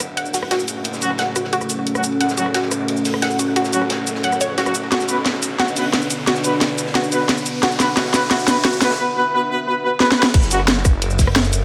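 A straight drum and bass pulse drives this aggressive, mechanical cut from a longer technical track, with an up-front electronic kit of cracking snare, hi-hat, rim click, shaker and crash cymbal layered over a gritty, saturated breakbeat kit with dark cymbals that sits in the background. Beneath them, a phased, detuned saw bass swirls thick and saturated, and a pair of moody ambient pads, one a sustained chordal bed under a filter sweep, the other a deep background texture, pump against the beat through chorus and reverb. A lush, punchy unison pluck spins arpeggios through cassette-tape coloring and delay, while a clear brass ensemble with light vibrato punctuates the build with up-front stabs. The first ten seconds are a build-up, with drum fills, a very quiet electronic riser, and a move from F# minor to B minor at 4.9 seconds. At 10.3 seconds the drop lands as a tight, layered electronic kick enters and the harmony returns to F# minor, all set in a moderate hall reverb.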